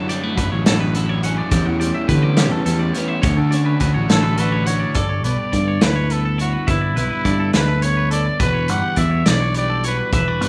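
A raspy, growling trumpet with slapback echo carries the melody from 4.1 seconds in this playful, intricate fragment of math rock and midwest emo, set in a straight 6/8 at 70 BPM over chords moving from Dmaj9 to G69 and Em9. Beneath it, a compressed twelve-string electric guitar with spring reverb sits in the background, a twangy clean guitar picks bright arpeggios, and a double-tracked, crunchy overdriven guitar plays a riff until 5.0 seconds, while a growly picked bass and a loose indie drum kit with a tight kick stay up front. The mix is rough, like a home demo, with small room reverb.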